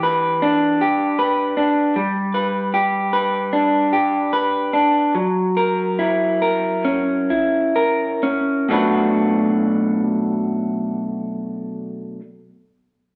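An electric guitar through a small old amp sits up front, picking arpeggios with a slightly broken-up, lo-fi, compressed tone across a range from B2 to B4. This cinematic, melancholic rock passage in B minor and 4/4 moves at a straight, unhurried 62-78 BPM, easing into a gradual slowdown from 2.0 s until 8.7 s. The harmony travels from Em7 to G and then F#7 before settling on Bm7 as a new section opens at 8.7 s. A wet, large studio reverb with a 1.2-second tail surrounds the guitar, and the recording has the feel of a band playing live in one room. Cut from a longer piece, it ends with the guitar falling silent at 12.2 s.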